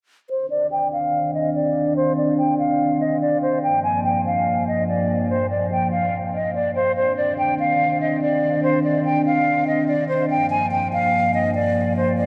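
Drenched in a huge ambient reverb with an 8.4-second tail, this dreamy, menacing and melancholic hip hop fragment moves at 144 BPM in a half-time feel in C minor, cut from a longer piece. From 0.3 to 12.3 seconds a breathy, hollow concert flute carries the melody up front, close-miked with vibrato and delay, over a deep, detuned analog pad that sustains dark, nasal chords with chorus and a sub octave. The harmony alternates between Cmadd9 and Gm7 while a filter sweep runs through the whole passage.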